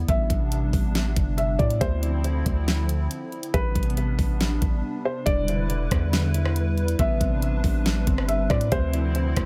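Hazy and ethereal, this half-time atmospheric cloud-rap excerpt at 139 BPM in A minor drifts over Am11, Dm9 and Em7 chords. A hollow, flute-like pad with ensemble chorus and sidechain pumping sits beneath a deep, sine-toned 808-style bass, while a felt-muted upright piano with audible action noise carries the low-passed, delayed melody. A produced R&B drum kit with a knocking kick and fat snare sits up front, a brief break falls at 4.8 seconds, and a dark, clean electric guitar enters with background arpeggios at 5.3 seconds, all within digital ambience.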